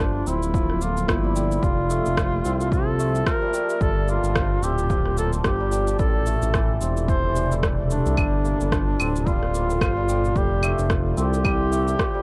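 A folk-style duduk sings the melody up front with vibrato over ringing, hammered santur arpeggios, both carrying tape echo, while a smooth, nasal synth bass and tape-warm electronic shaker, rim click and claves start alongside them. Within the first second they are joined by an ethereal, slow-attack pad pumping in the background with ensemble chorus and reverb, and by a punchy, overdriven electronic kick. It is all part of this mystical, hypnotic organic downtempo passage at 110 BPM with swung 16ths in G dorian, cycling through Gm9, Fmaj9 and Am7 under a worn, warbling cassette-tape haze.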